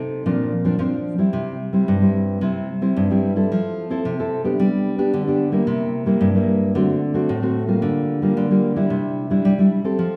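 Set in the generous, wet reverb of a recital hall, this lively, playful samba excerpt at 111 BPM features a solo nylon-string guitar, up front and warm, thumb-plucked in a classical style from G2 to A4, moving through chords from Bbadd9 and Fmaj7 to D7 and Gm7/D before landing on Cadd9 near 8.9 seconds.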